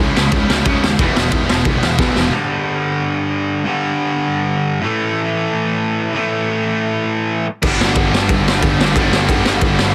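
A dense, heavily limited mix with light reverb carries this energetic, rowdy punk rock excerpt at 181 BPM, where an up-front, bright distorted electric guitar riff runs throughout, joined by a very quiet second distorted guitar, a double-tracked, sludgy overdriven guitar in the background, a growly fuzz bass and a gritty small-room garage kit with a boomy kick, whose fill at 2.0 seconds hands the first guitar the stage alone over G5 and A5 from 2.3 seconds until the full band returns on G at 7.6 seconds.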